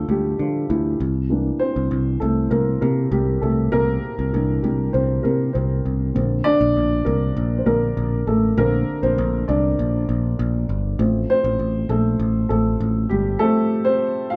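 A straight 4/4 pulse at 99 BPM carries this hopeful, anthemic piano-driven pop passage, cut from a longer piece and tuned to A4 = 442 Hz. A dark upright piano leads from the start with a mellow, woody, smooth and vintage tone, taking solo turns through both the opening section and the second section that begins at 6.2 seconds. Beneath it, a picked electric bass sits up front with a bright, growly, direct amped sound, holding the low end until 13.4 seconds, after which the piano finishes by itself. The harmony moves from Dm to C7, settles on Bbadd9 at the section change, and arrives on F near the close. The band sounds as though it is playing live together in a small room, with a wet reverb giving the pair an intimate, close-knit presence.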